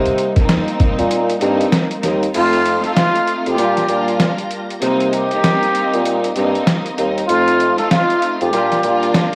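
A swung 97 BPM boom-bap hip-hop groove in 4/4 rides on a gritty, pitched-down sampler-style drum kit whose thumpy kick drops out from 1.1 seconds, beneath a distant, roomy bassoon bass line with light vibrato and lush, bowed strings with a soft attack and a tape-filtered sheen, while a very quiet tonewheel organ with key click and slow rotary enters at 2.3 seconds and a plunger-muted trumpet joins at 2.4 seconds with a jazz-style wah-wah melody of scooped notes, giving this dark, reflective C dorian piece a cassette-recorded grain and vinyl crackle.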